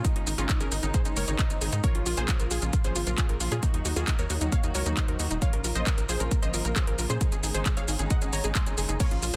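Emotional and bittersweet, this uplifting trance excerpt opens on a lush, detuned unison pluck carrying the melody with tape echo, while a second, warbling, vintage-toned unison pluck plays arpeggios in the background and a dark, veiled, con sordino string section holds sustained chords beneath. A punchy electronic kick sits up front alongside a house drum kit of handclaps, metallic hi-hats, ride cymbal and shaker, and a tight, driving sawtooth sequencer bass enters at 0.2 seconds. The plucks, strings and bass pump against the kick, and the dry mix is given a dense, heavily limited modern master.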